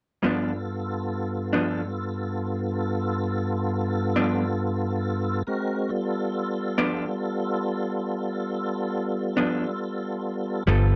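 A gritty, rollicking slow blues excerpt in 12/8 at 46 BPM, sitting on a G7 in G mixolydian, opens at 0.2 s with a dark, slightly broken-up electric guitar through a small old amp, picked with tremolo and a lo-fi, compressed edge. A full tonewheel organ holds sustained chords alongside it, lightly overdriven with chorus vibrato, key click and a slow rotary speaker. At 10.7 s a round, punchy, foam-muted electric bass lands on a low G just before the cut, all within a dry, close 1970s-style studio sound with light reverb.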